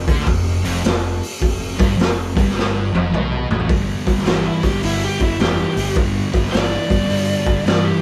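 A swung 106 BPM groove in 4/4 drives this raunchy, gritty blues rock power-trio excerpt with a southern rock edge, set in G mixolydian and played live in a stone room with moderate reverb. A raw garage drum kit with a boomy kick and a saturated, rolled-off top sits up front beside a thick, double-tracked fuzz guitar riff, while a growly, overdriven fuzz bass anchors the low end, and the harmony shifts from Fsus2 to G5 at 3.7 seconds after a drum fill. At 4.3 seconds a dark, overdriven slide guitar takes the melody for a solo that runs to the end of the cut.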